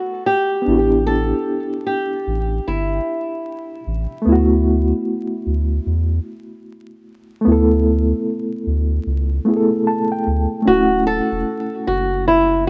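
A swung 75 BPM lo-fi hip hop groove in 4/4 carries this nostalgic, reflective clip, where a reedy, slightly out-of-tune electric piano with fast tremolo and a worn, speaker-like tone holds the accompaniment over a deep, round dub sub bass. A bright, fingerpicked flamenco guitar with fresh strings sings the melody through tape echo and drops out at 3.8 seconds. The piano adds a fill at 9.5 seconds, and the guitar returns at 10.7 seconds as the harmony settles from D6 and A9sus4 onto Dmaj7. Light small-room reverb and vinyl crackle give the rough home-demo mix its intimate, dusty character.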